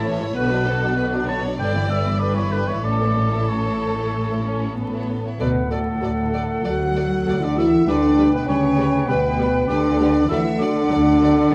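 Heard through close, detailed microphones in a moderate recital-hall reverb with a layer of vinyl crackle, this urgent, stormy fragment of a quick classical-period symphonic movement moves with uneven, rubato beats. A rich, expressive chamber violin section carries the melody over a mellow, distant oboe and a focused, lush second violin section, while a dark, woody viola section murmurs in the background and a cello section with soft attack and portamento plays alongside a smooth, even double bass section underneath. At 5.4 s the harmony shifts from B minor to D major as an airy silver flute, a close-miked clarinet and a prominent, roomy French horn section holding sustained chords enter together.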